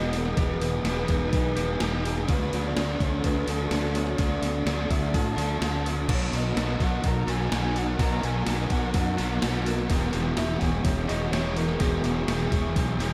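A straight 4/4 pulse at 126 BPM comes from an up-front, gated 80s digital drum machine with a thumpy kick and gated-reverb snare, anchored by a round, fuzzy fingered bass and an overdriven semi-hollow guitar riff with analog chorus, all in a blissful, dreamy shoegaze and dream pop excerpt tuned to A4 = 437 Hz. A breathy, flute-like synth lead with vibrato, chorus and tape echo carries the melody over a hollow, mellow pad, while a twangy guitar with reverse reverb sits in the background and a shimmering, octave-doubled twelve-string acoustic fingerpicks very quiet arpeggios. The chords move from Emaj9 through D6 to Bmaj7, and at 6.1 s, as Bmaj7 arrives, a biting, double-tracked overdriven guitar riff joins before the harmony settles on E69, the whole mix soaked in a huge ambient reverb.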